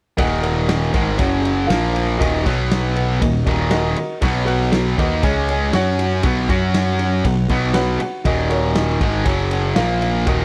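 A gritty, swaggering classic rock passage in Eb minor at 119 BPM opens at 0.2 seconds with everything at once: a bright, overdriven, double-tracked electric guitar riff up front, a fuzz-drenched picked bass growling low beneath it, and a raw garage kit of punchy kick, ride and medium-tuned snare with a saturated, rolled-off top. A dark, woody upright piano with audible action noise and short sustain sits quietly in the background and steps forward with a brief fill from 3.2 to 4.2 seconds. The dry, close sound with its small room ambience recalls a 1970s studio, as the power chords shift around the Eb minor centre.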